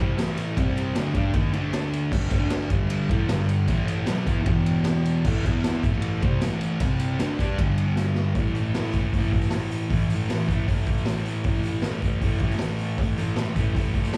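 A thick, double-tracked fuzz guitar drives a swaggering, raw garage rock riff at 154 BPM, spanning E2 to G4 over power chords, backed by a boomy, gritty drum kit with a rolled-off top, a faint jingly tambourine and club reverb from a live gig heard through the venue's PA, with a drum fill at 8.0 seconds leading into a new section at 8.4 seconds in this short cut from a longer piece.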